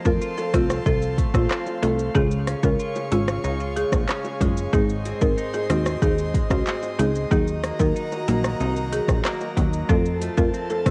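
Dancehall at 93 BPM with a tough, bouncy mood, this cut from a longer piece sets a dry, rustic marimba melody with tape echo over a woody, round FM synth pluck, punchy sawtooth analog bass, twangy arpeggios from a clean electric guitar and an airy, breathy pad pumping with sidechain under chords moving F, Db, Ab and Ebm, while an up-front electronic afro-pop kit of deep kick, metallic hi-hats, handclaps, rim click and shaker drives it, very quiet low-tuned bongos enter at 0.4 seconds, and most parts carry a home-cassette tape grain.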